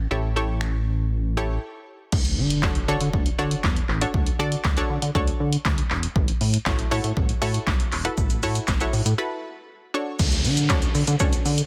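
A glossy, dark chorused synth bass pumps under a bright, detuned analog pluck and a punchy analog drum machine of kick, snare, handclaps, finger snaps, hi-hat, shaker and crash in this summery, upbeat dance-pop excerpt at 119 BPM, moving from A7 to Dmaj7 and A6 with breaks at 1.6 and 9.2 seconds, an electronic impact at 2.1 seconds and a downlifter closing from 10.2 seconds, all in a dense, heavily limited, dry mix.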